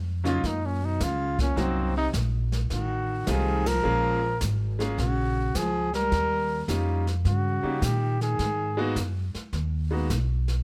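A woody, growly upright bass opens this cool, swinging small-group jazz excerpt in Eb minor at 106 BPM, joined almost at once by a clear, long-sustaining grand piano, a subtoned baritone saxophone on the second line, a veiled, bucket-muted trumpet carrying the melody with light vibrato, and a brushed drum kit with a boomy kick, all captured close and dry, with a band accent at 3.6 seconds before the horns stop at 8.9 seconds.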